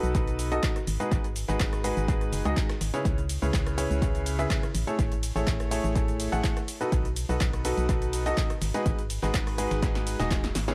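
Piano house at 124 BPM in a straight 4/4, this soulful, bittersweet piece is cut from a longer track and tuned slightly low, to A4 = 439 Hz. A clear upright piano carries the riff up front, woody and intimate, with audible action noise, a slightly detuned edge and long sustain, shaped by sidechain pumping and analog delay. Beneath it, a hollow, organ-like FM bass with a fast, decaying attack and a dark tone pumps under the same sidechain, while a punchy analog drum machine supplies cabasa, handclaps, hi-hat, ride cymbal, rim click and snare, tape-warm and re-recorded in a small room, with delay on its hits. A gritty, compressed sampler-style kit adds a very quiet layer of hi-hat and fat snare from 0.1 seconds, and an analog electronic kick drum anchors the groove until 10.4 seconds. The harmony moves through B7, G#m7, C#m7 and Amaj7, a drum fill arrives at 9.8 seconds, and the mix stays echo-heavy with little reverb.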